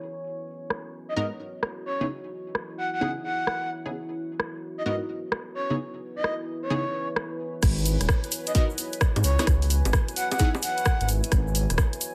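A deep, moody ambient pad with chorus and sidechain pumping opens this late-night, bouncy two-step garage excerpt. It is soon joined by a tape-warm garage drum kit of bongos, rim clicks, filtered hi-hats and crash cymbal, along with a breathy, flute-like synth lead and punchy detuned chord stabs under a filter sweep, both lead and stabs carrying chorus and tape echo. At 7.6 seconds the drop brings in a rumbling detuned saw bass with tube saturation, a tight electronic kick up front and a grainy egg shaker in the background, while the chords alternate between G#m7 and C#m7 in a light digital ambience.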